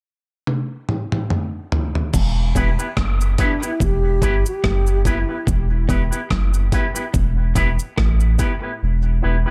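Hypnotic and spacious, this dub reggae fragment in E minor moves at 72 BPM with a lightly swung 16th-note feel, opening at 0.5 seconds on a fill from a gritty, overdriven breakbeat sampler-style kit with a thumpy kick, crash, hi-hat, rim click and toms, placed up front and sounding re-recorded in a small room. At 2.1 seconds the music settles on an E minor chord as a round, sine-like sub bass arrives up front, joined by a close, dry cabasa, a slightly broken-up, twangy electric guitar riff sitting low in the background with dub echo, and soon a bright, clean electric guitar played through an envelope filter, also echoed. From 3.4 seconds an airy, mellow alto flute with vibrato and a crisp attack carries a brief close-miked melody through dub echo, the whole piece framed by a digital ambience.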